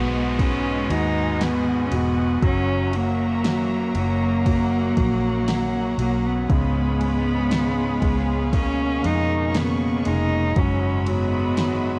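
A heartfelt, emotional pop ballad moves at a slow 59 BPM in 4/4, heard as a short cut from a longer piece. A solo cello carries the melody up front with a bowed, nasal, boxy tone and vibrato. A chamber cello section plays a second line beneath it, earthy and clear. A lush studio string section holds sustained chords in the background. A concert grand piano supplies polished accompaniment with a deep low end, and a round, foam-muted fingered electric bass sits dark and amped near the front. An electronic R&B drum kit enters at 0.4 seconds with a soft kick, fat snare and ride cymbal, re-recorded in a large room. A background downlifter sweeps through the first 6.5 seconds. The harmony moves from B through F#7 and C#7 to a closing F#7sus4. The whole take has the light reverb and small-room feel of a home cassette recording, with tape coloring the piano, strings and cello section.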